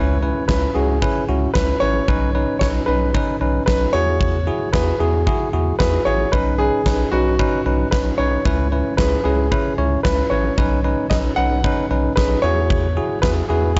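A polished grand piano carries the melody between F#4 and F#5, its warm, present, short-sustained notes leading this nocturnal, driving synth-pop piece at 113 BPM in a straight 4/4. Beside it, a bell-like tine electric piano plays clean, bright accompaniment from C#4 to C#5, direct and close in the mix. Underneath, a round analog bass with a fast attack and dark, deep tone holds down the low end between A1 and E2, thickened by tube saturation. A huge arena drum kit enters at 0.5 s with a punchy kick and a fat snare, its acoustic sound set in a pumping hall. The harmony cycles through C#m7, Badd9 and Eadd9, and the whole passage, cut from a longer piece, has a dry, close sound with a mellow top end.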